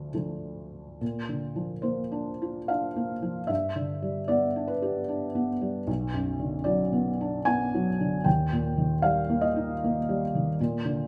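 In a rubato three-four lilt, this brief, intimate and melancholic neoclassical minimalist fragment, cut from a longer piece, features a solo felt-muted upright piano, dark and mellow with thick felt and audible action noise, set up front in a moderate large-studio reverb as its chords drift from D minor through B-flat add nine, G6 and B minor to E-flat.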